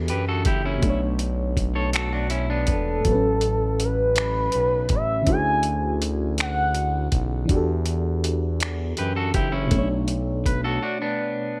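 A slow, straight six-eight pulse rolls along on a gritty, compressed sampler-style kit of finger snaps, hi-hat and a thumpy kick, giving this tender R&B fragment from a longer piece a dusty, tape-warm soul feel. Underneath, a smooth synth bass holds sustained low notes with a sawtooth and ring-modulated edge, while a dark, full-bodied FM electric piano with tremolo fills in lush extended chords. A twangy electric guitar at the edge of break-up plays a second line near the start. From 2.7 to 7.2 seconds, a detuned, gliding portamento lead carries the melody with chorus and vibrato on its soft-attacked tone. The guitar returns at 9.0 seconds, and a brief break closes the passage as the drums and bass fall away, leaving the electric piano and guitar in a digital ambience.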